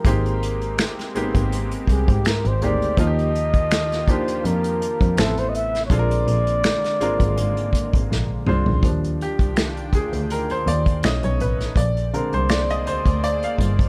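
A bucket-muted trumpet opens this smooth, soulful neo-soul excerpt in Eb major, its veiled, dark tone carrying the jazz-style melody with soft attacks, scooped notes and light vibrato over a clear baby grand piano and a lush unison pad. The tempo sits at 82 BPM in 4/4 with a gentle 16th-note swing, and the chords move through rich extended colours such as Abmaj9, Ebmaj9 and Bb7. An unplugged drum kit played with bundle sticks sits up front, mixing finger snaps, hi-hat, toms, a punchy kick and a medium-tuned snare, while a bowed double bass adds a biting, earthy low line with light vibrato from 0.1 seconds. Behind them the thick, detuned sawtooth-and-square pad holds sustained chords with a slow attack and chorus, bright yet tucked in the background. After a drum fill at 8.1 seconds, the trumpet has stopped and the piano takes a solo from 8.8 seconds, its natural, short-sustained tone stepping forward over changes to B9 and Bb9. 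The excerpt sits in a small room with a dark, warm production.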